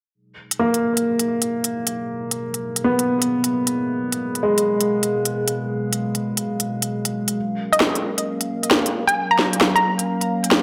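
Crisp hi-hats and a woody snare from an organic electronic kit, swung at 66% on the sixteenths, drive this nocturnal, ghostly future garage excerpt at 133 BPM in G# dorian. A warbling, nostalgic tape-like pad fades in beneath a clear upright piano with delay that plays until 7.4 s as the chords move from G#m7 to F#maj7, before a hollow, nasal square pluck with tape echo takes the melody from 7.7 s, the whole set in a lush hall reverb.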